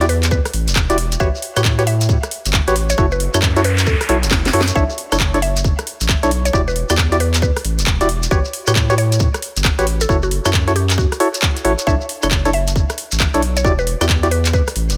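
A swung two-step garage groove at 135 BPM in E dorian drives this bouncy, moody fragment, where a tight electronic kick and a house kit with cracking snare, metallic hats, claves, handclaps and rim clicks sit over a thick, saturated sub bass with sidechain pumping, while hollow, dark organ stabs and a woody, round mallet-like synth pluck, both chorused and dub-echoed, trace an Em9–A13–F#m7–Bm11 cycle beside a grainy, close shekere, with a background noise sweep from 3.2 to 4.8 seconds overlapping a brief drum fill at its close.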